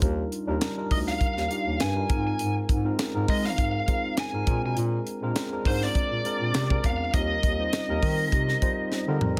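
Polished 1980s jazz-funk pop in an upbeat, glossy mood at 101 BPM in Eb major with a light 16th-note swing, where a tight, up-front funk drum kit with a high-tuned snare drives beneath a mellow bass clarinet bass line rich in vibrato and subtone, a worn, slightly out-of-tune tine electric piano accompanies through analog chorus over chords such as Ebmaj9 and Bb9, and a biting, overdriven lead guitar enters at 0.9 s with a picked melody, all in a room with little reverb, until a drum fill at 8.9 s closes the excerpt.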